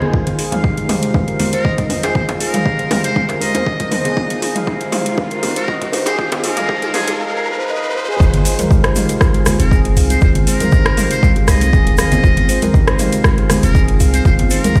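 The recording has the sound of a big system playing into a bare stone room, with light reverb and a small-room ambience around a spiritual, earthy afro house groove in F minor at 119 BPM, swung slightly on the sixteenths and resting on an Fm9 chord. A punchy, overdriven electronic kick sits up front over a deep, boomy 808-style bass with a sine body and a noise layer that pumps with the sidechain, while a deep house kit adds metallic hats, rim clicks and toms, and ringing congas and a deep djembe sit close and dry in the background. A meditative stainless-steel handpan plays soft arpeggios through tape echo, a mellow tine electric piano adds stabs through a sweeping filter, and a very quiet, ethereal pad holds sustained chords underneath. From 1.5 seconds a buzzy, thin trumpet with a metal mute sings a distant, jazz-style solo melody with light vibrato and tape echo. A drum fill from the opening and a riser from 3.3 seconds build toward the drop at 8.2 seconds, where a grainy egg shaker joins for the rest of this excerpt cut from a longer piece.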